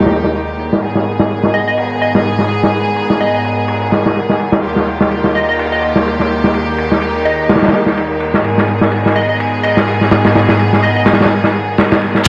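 Gritty, saturated breakbeat drums with dark, low-pass-filtered cymbals and snare open this energetic, funky breaks excerpt together with bowed, reedy gut-string chords that pump in a lush hall, while a bright, detuned square-wave lead sits in the background through phaser, telephone-style filtering and dub echo until 11.0 s.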